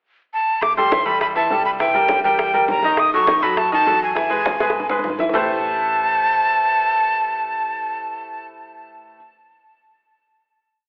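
A breathy jazz flute opens this short, fiery salsa piece at 0.3 s with a pickup, its crisp attack, chiff and vibrato carrying a motif-based melody of call phrases up front, colored by tape echo. At 203 BPM in A minor, bass and hand percussion enter at 0.6 s. A dark, round hollow-body electric bass plays a punchy tumbao in the background that anticipates the chords. Tight, high-tuned bongos keep steady eighths with hand bell, and ringing congas add slaps and open strokes. From 0.8 s, a brilliant concert grand piano, present and slightly worn with a deep low end, drives a montuno in octaves through the Am7, C7, B7 and E changes. After a drum fill, the group lands on a final Am9 chord at 5.3 s, with the whole passionate performance bathed in a wet, large studio reverb and filtered to a telephone-like sound.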